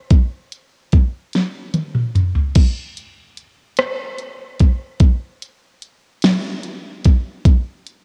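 Yearning and late-night in mood, this short R&B fragment in 6/8 features a smooth, electronic drum kit placed up front, with a knocking kick, fat snare, warm hi-hats, rim clicks, toms and crash cymbal, all carrying a cassette-tape character. A drum fill arrives from 1.3 to 2.6 seconds, and the kit plays until 8.0 seconds. The sound is that of a home cassette recording with light reverb, the drums re-recorded in a small room.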